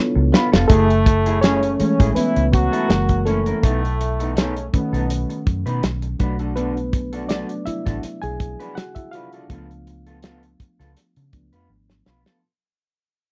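A dry, close studio sound in the 1970s style puts the instruments near the listener in this lush, bittersweet soul passage cut from a longer piece, with a cinematic feel and a light swing. It opens with a band accent and a drum fill. Then a reedy, worn electric piano, slightly out of tune and heard through its built-in speakers, takes a solo from 0.7 seconds to the end. Up front beneath it, a round, foam-muted fingered bass with a dark, amped tone and transformer saturation, and a small-room acoustic kit with a fat snare, tight kick, hi-hat and rolled-off top give a mid-forward drive. A bright, twangy electric guitar, picked and slightly broken-up through a small old amp, plays a riff, while a clear, punchy trombone section with light vibrato adds tape-echoed stabs until 5.4 seconds. The harmony moves through rich chords such as F#m9, B7 and E9sus4, and the passage fades out from 0.7 seconds to the end, with a closing drum fill in its final moments.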